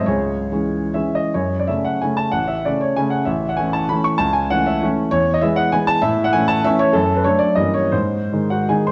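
A clear baby grand piano opens on C# minor and carries this brief fragment of a romantic classical dance in triple time alone, moving in dotted rhythms across a range from A1 to C#6. The mood is capricious and wistful. The tempo breathes freely with rubato, ranging between 132 and 211 BPM. Sitting up front with an open tone and long sustain, the piano is wrapped in a wet recital hall reverb that gives the whole production a dark, warm cast. After a short opening passage, a new section begins at 1.3 seconds on F# minor and drifts through A6, A and E. It then passes through a diminished chord at 7.6 seconds before landing on G# as the fragment breaks off at 8.9 seconds.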